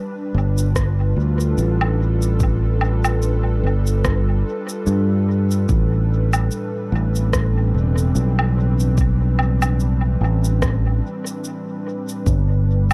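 Hazy and spacious, this ambient dub excerpt drifts on a swung sixteenth-note feel. A breathy, detuned pad with a slow attack holds chorused chords from the start, and a round, punchy fingered electric bass with tube saturation sits up front from 0.3 seconds. An electronic shaker, rim click and woodblock carrying dub echo enter at 0.6 seconds, followed by a deep electronic kick at 0.8 seconds, both tape-warm and re-recorded in a large room, while the harmony moves from G9 to Am11 within a shadowy digital ambience.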